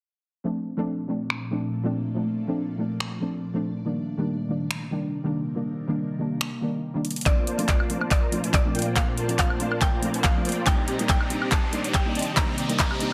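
Playful and lush, this future bass clip at 141 BPM in Bb major rides a swung half-time feel. A soft, round pluck, an ethereal pad and a trap kit of finger snaps, handclaps, metallic hats and woodblock carry Bbmaj7 and Cm9 chords until 7.3 seconds, when a knocking electronic kick, huge bright supersaw chords and a woody mallet-like pluck melody enter over a filter-swept build-up, with a background riser joining at 9.6 seconds.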